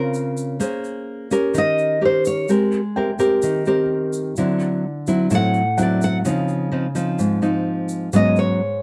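Dark, dry and close, this melancholic, intimate bossa nova fragment at 128 BPM sets a fingerpicked classical nylon-string guitar up front, comping through rich chords such as Gbmaj7#11, Abmaj9 and D9 over a faint, grainy, compressed tube shaker, while a second full-bodied nylon-string guitar carries the solo melody from 1.6 seconds and a soft grand piano with audible action noise glows in the background from 3.0 to 6.3 seconds.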